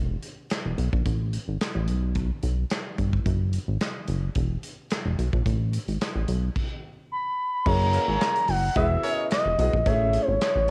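A glossy, nasal chorused synth bass sits up front in this smooth, feel-good early-eighties boogie funk excerpt, riding a straight groove from a punchy modern studio drum kit with handclaps, hi-hat and crash, colored by cassette tape and a pumping room sound. After a stop that clears the floor at 6.6 seconds, an expressive, dark synth lead with vibrato enters at 7.1 seconds. A boxy grand piano and a distant, mellow horn section with light vibrato and octave doubling then join over lush ninth and major-seventh chords, all in a small, lightly reverberant room.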